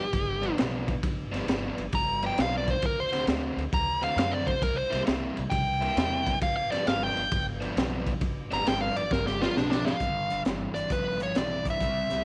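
A dark, smooth lead guitar with overdrive opens this soulful, laid-back electric blues shuffle at 134 BPM, soloing up front until 10.0 seconds over a picked, overdriven semi-hollow guitar riff and woody pizzicato upright bass in G mixolydian. A crunchy breakbeat kit enters at 0.1 seconds, gritty and saturated, with a tight kick, a high-tuned snare, and hi-hat and ride cymbals with a rolled-off top; a drum fill from 9.1 seconds leads into a new section. The swung changes move from G7 to D7 and C7 and back to G7 in a small room with light reverb, cut from a longer piece.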